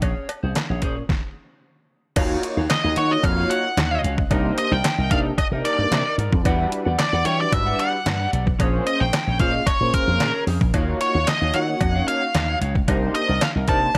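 The excerpt opens on a clean electric guitar riff with a lush chorus, a punchy, bright slap bass pushed through an envelope filter, a detuned 8-bit drum machine with a thumpy kick, medium-tuned snare, hi-hat, handclaps and crash, and a metallic cowbell set in the background. This is early-eighties boogie funk at 112 BPM in a straight 4/4, with a late-night, danceable mood over minor ninth chords beginning on Bbm9. A stop falls at 1.1 seconds, and at 2.2 seconds mellow synth brass enters as accompaniment, round and sawtooth-edged with vibrato and chorus. At 2.7 seconds a nasal lead guitar with a parked wah and overdrive takes the melody, sitting up front beside the overdriven, sampler-style drums and the amped bass. The sound is dry, with little reverb, and the scooped clean guitar stays low in the mix beneath the brighter parts.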